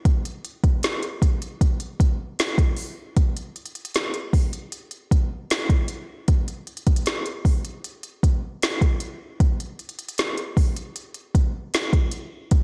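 Lightly reverberant and up front, this short cut from a longer romantic, smooth R&B piece at 77 BPM in a straight 4/4 features only an electronic, produced drum kit, with a soft kick, woody snare and smooth hi-hats that sound tape-warmed and re-recorded in a large room, playing from 0.1 to 12.6 seconds.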